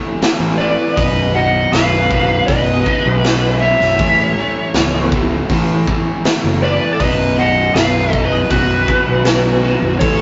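Blues rock and southern rock in a power-trio mould, this swaggering, driving excerpt from a longer piece sets a bright, double-tracked overdriven rhythm guitar riff in the background against a raw garage drum kit with a boomy kick, medium-tuned snare, hi-hat and the pumping ambience of a stone room, an up-front round fuzz bass, a lo-fi lead guitar through a small cranked amp with wah and slapback echo carrying the melody, and a dark, smooth overdriven lead guitar tracing a second line, all captured as a rough rehearsal-room recording with tube saturation and a rolled-off top.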